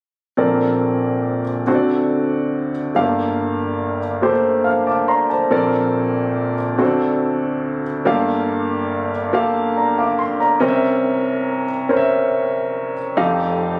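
Gospel in 6/8 at a slow 47 BPM in dotted quarters, this jubilant, uplifting fragment from a longer piece features a solo upright piano in B-flat major, playing from 0.4 to 13.8 seconds across a range from F1 to F6 with rich chords like Bbmaj9, Gm9 and C7b9 before settling on F9. The piano sits up front with a clear, woody, intimate tone, audible action noise and long sustain, and a brief fill at 4.2 seconds leads into the second section at 5.5 seconds. Light reverb gives the phone-in-the-room recording a polished studio sheen.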